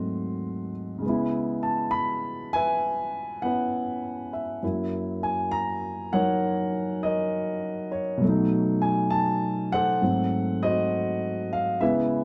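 At 67 BPM in 4/4, this solo jazz excerpt swings its eighth notes with an easy, unhurried lilt, cut from a longer piece and running just over 12 seconds. A lone baby grand piano carries everything, its tone dark and mellow with long sustain, placed up front and spanning from F#2 to C6. The harmony opens on G#7b9, settles into C#m7 at 1.0 seconds, then moves through F#7 and B7 before returning to G#7b9 at 10.0 seconds. A moderate club reverb gives the instrument a close, intimate room around it, and the production leans warm and shadowy. The mood is sophisticated and swinging, like late-night playing in a small venue.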